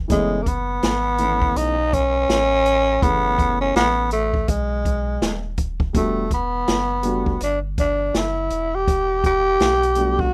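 A saturated sub bass opens this cool, mellow jazz-hop excerpt, joined almost at once by a breathy, raspy tenor saxophone carrying the melody up front with vibrato and scooped notes, a dark grand piano with audible action noise voicing F#m11 then Em11 from 6.0 seconds, and an up-front acoustic drum kit with a boomy kick swinging on hi-hat, kick and snare in a small room, all in a rough home-demo mix with light reverb.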